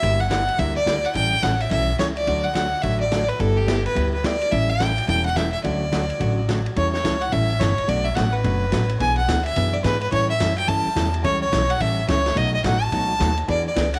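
A bowed fiddle with light vibrato carries the melody up front in this cheerful, swinging western swing passage at 214 BPM, its tone clear and focused. A dark, clean hollow-body electric guitar, fingered and compressed, comps through changes such as Gm6, A7 and Dmaj7, while a woody pizzicato upright bass anchors the low end. A saturated, gritty drum kit with dark cymbals, a tight kick and a rolled-off top sits lower in the mix, and everything shares a small room with light reverb as the harmony turns toward Bm7 and E7 after 6.8 s in this section cut from a longer piece.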